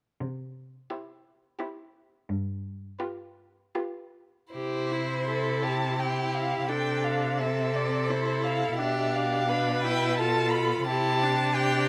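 A warm, expressive violin carries the bowed melody with vibrato, soft attacks and portamento, sounding distant, while a rich, up-front cello plays the bass alone from 0.2 s, and a focused second violin and clear viola join at 0.9 s with a second line and accompaniment in this tender, serene, slow romantic string quartet movement in C major, a rubato 3/4 at 74-89 BPM cut from a longer piece, captured by close, detailed microphones with light reverb and shifting into a new section at 4.5 s.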